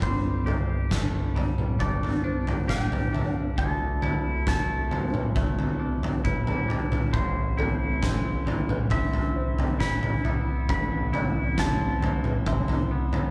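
A brooding, melancholic post-rock passage at 68 BPM in A minor opens with the full band together: an oversized, low-tuned acoustic drum kit sits up front with a boomy kick, fat snare and toms, its big, pumping room sound saturated and gritty. A clean, picked, twangy electric guitar carries the melody in a scooped, compressed tone until 12.4 s, while a second twangy guitar, darker and fingered, plays arpeggios in the lower register. Alongside them a felt-muted upright piano adds soft, intimate arpeggios with thick felt, short sustain and audible action noise, kept in the background with a growling, overdriven picked bass that stays punchy and direct. At 7.1 s a very quiet, organ-like pad enters with slow-attack sustained chords, its pure, detuned tone shimmering with ensemble chorus and a long release. The harmony moves from Gsus2 through Dmadd9 to Amadd9, and the band sounds as if playing live in one room with a moderate large studio reverb, in this excerpt cut from a longer piece.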